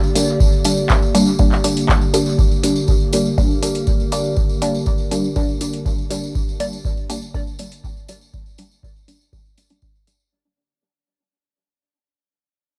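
A dry, gritty hardware recording with a cassette-tape character opens this short dub techno fragment, cut from a longer piece, with a deep, cavernous mood in a straight four-four pulse. A warbling, nostalgic pad holds dark, detuned chords throughout, its lo-fi 12-bit sampler grit softened by chorus and its own built-in reverb, and it pumps against the sidechain. Up front, a muted, nasal dub chord stab with a fast pluck and a moving notch passes through a phaser and dub echo, pumping in the same way. A booming analog drum machine supplies handclaps and metallic hi-hats fed into dub echo, while a dry electronic kick joins at 0.4 s and sits most prominently in the mix. A jingly acoustic tambourine adds a bright top, and from 2.4 s the whole recording fades out as a filter sweep moves across the stab.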